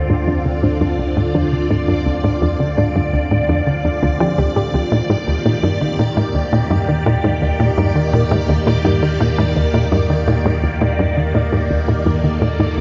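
Ambient, sequencer-driven space music with an expansive, luminous mood, this excerpt sets a bright, swirling phased string machine up front, holding sustained chords that move from Dm7 to Ebmaj7 at 4.9 seconds, while a tight, punchy sequencer bass drives a riff with tape echo and a filter sweep running throughout. Beneath them sits a deep sine sub bass, and a soft, round pluck traces gentle arpeggios in the background through chorus, tape echo and shimmer reverb. The whole excerpt floats in a vast cathedral-like reverb with a long, echoing tail.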